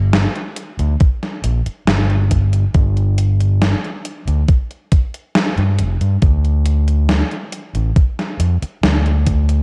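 A dark, warm production with little reverb frames this short, hazy vaporwave excerpt in G minor, moving at a slow 69 BPM in a straight 4/4 with a melancholic cast. An overdriven fingered electric bass opens at 0.0 s and anchors the low end from F1 to G2, its amped tone punchy and up front. A gated 80s digital drum machine supplies hi-hat and snare from 0.1 s, the snare carrying a gated reverb tail and the kit roughened by overdrive and vintage 12-bit sampler grit, as if re-recorded in a large room. An electronic kick drum arrives at 1.0 s with a thumpy, sampler-style weight, also overdriven and gritty, captured in a small room and sitting prominently forward. The three parts hold a single section until the cut, leaving a hazy, melancholic groove built from bass and drums alone.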